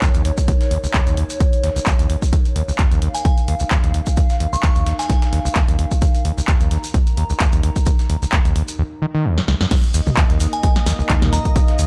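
Trippy and raw, this acid house excerpt rides a squelchy, distorted sawtooth acid bass riff and an up-front electronic kick, backed by a punchy analog drum machine with claps, toms and crash, a very quiet gritty sampler-style soul drum kit, a grainy shekere in the background and a warbling, lo-fi tape-like pad pumping under the kick, while a crystalline FM synth bell with tape echo glints in from 3.1 seconds, and a drum fill leads into a drop at 9.7 seconds, where a thick, detuned unison pad joins at 10.0 seconds.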